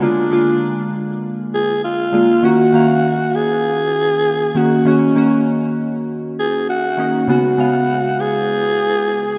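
A breathy, raspy alto saxophone carries a smooth pop-style solo melody with vibrato and a digital delay over glassy, sine-toned digital keys with chorus and fast, decaying attacks, both up front, in a mellow afrobeats excerpt at 99 BPM in Eb minor, moving from Bb7 to Ebm7 to Db7sus4 with a swung sixteenth feel, soaked in a lush 3.0-second hall reverb within a rough home-demo mix.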